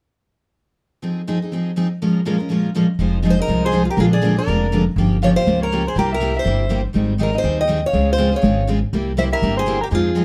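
Jazz manouche in F minor at a brisk 243 BPM, this swinging, bittersweet excerpt opens with two picked steel-string acoustic guitars, one bright and full-bodied and one softer concert-style, comping through Fm7 and Bbm7 before a woody, thumpy upright bass enters up front at 3.0 seconds and a boxy archtop guitar carries the melody with audible finger squeak while a mellow, distant soprano saxophone with vibrato weaves a second line over Gm7b5, C7, Abmaj7 and Dbmaj7, all in a dark production with moderate studio reverb.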